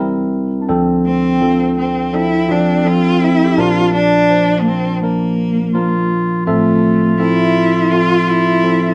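A straight 4/4 pulse at 83 BPM carries this intimate, reflective acoustic folk-pop ballad in D minor, cut from a longer piece, with a clean tine electric piano played through a combo amp up front as accompaniment and a soft, felt-muted upright piano adding very quiet arpeggios until 5.1 seconds. A dark, bowed cello from a single player takes the melody from 1.1 seconds, expressive with vibrato and portamento, while a mellow solo clarinet in classical style supplies a smooth second line. The band plays live in one room, wrapped in a moderate stone reverb, as the chords move from C7 through Dm7 and Bb to Fmaj7/A.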